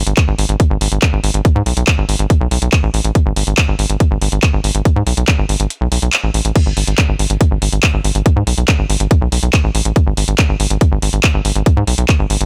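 Psychedelic trance at 141 BPM in a straight 4/4, this short cut from a longer piece feels driving and alien, centred on G# phrygian with tuning set slightly below standard. A tight sequencer bass opens the passage at 0.0 seconds, its nasal sawtooth and square-wave tone shaped by a filter pluck with a fast attack and quick decay, punchy and up front between G#1 and G#2. An electronic drum kit follows almost at once with crash cymbal, handclaps and metallic hi-hats, layered and produced, carrying the slightly boxed character of a small room. The electronic kick sits loudest of all, a layered, tight thump placed up front, and it drops out briefly from 5.7 to 6.6 seconds before returning. The mix stays dry and close, with very little reverb, keeping the whole groove lean and forceful.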